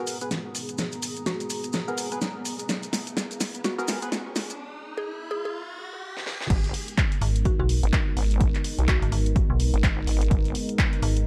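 A nasal, resonant vowel-sweep wobble bass hits hard at the drop at 6.5 s alongside an overdriven, punchy electronic kick, with a metallic FM bass joining at 7.2 s, after a build-up in this gritty, swaggering bass house excerpt. In that build-up, a woody mallet-like synth pluck carries the melody while a hollow percussive organ stab and a deep, moody analog pad are shaped by filter sweeps. A cloudy granular pad, grainy maracas and a big-room dance drum kit with a huge snare fill out the sound, while an electronic riser climbs through a short break into the drop.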